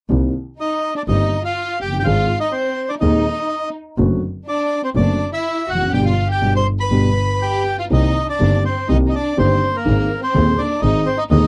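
A rubato 4/4 tango at 124 BPM in C minor, sultry and tense, opens with a dark, woody upright piano with long sustain and a rich, smoothly bowed double bass played up front with vibrato. At 0.6 seconds a reedy bandoneon takes the melody up front while a warm violin section adds an expressive second line with vibrato and portamento. The harmony moves through Cm7, Ab, D7/F# and G, and the band hits an accent from 5.9 to 7.9 seconds on the G. The dry, close 1970s-style studio sound carries light reverb, and the passage is cut from a longer piece.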